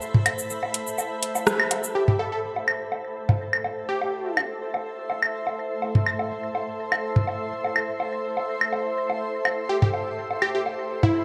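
Minimal techno in A minor at 124 BPM, this quirky, clinical excerpt moves in 4/4 with a light swing on the sixteenths and a dark production soaked in a lush hall reverb. It opens in a drop where a layered electronic garage kit of metallic hi-hats, rim click and shaker sits up front until 1.9 seconds, with a band accent along the way. Overdriven analog-style electronic toms and woodblock, re-recorded in a small room, carry the percussion nearly throughout and sit just as close. Underneath, a cloudy, evolving granular pad drifts in a blurred haze of detuned sine and sawtooth, while a tempo-synced triangle texture pulses on a single high note through chorus and its own reverb. At 2.0 seconds a punchy, catchy unison lead arrives, built from detuned sawtooth and sine with a noise layer, a filter sweep, phaser and dub echo, and it returns at 9.7 seconds with its bright, full-bodied hook.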